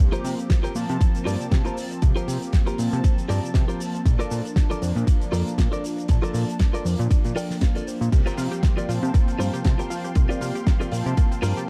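Nu-disco with a groovy, feel-good mood, this short excerpt from a longer piece moves at 118 BPM in 4/4 with a light 16th-note swing, shifting from C7sus4 to Bbmaj7 and back. A punchy, layered electronic kick sits up front alongside a fat, saturated analog bass built from detuned sawtooth and square waves, the bass pumping through sidechain. Beneath them a damped 70s drum kit adds a fat, dry snare with hi-hat, ride, crash and shaker, while a mellow, brassy synth with chorus and vibrato supplies the accompaniment. A bright, compressed clean electric guitar, recorded direct with a subtle chorus, carries a picked riff and plays a fill at 7.1 seconds. At 8.1 seconds a lush, nasal unison pad enters with slow-attack sustained chords, together with a round analog pluck playing arpeggios through chorus and delay in the background. The production is dark and warm, set in a small room ambience.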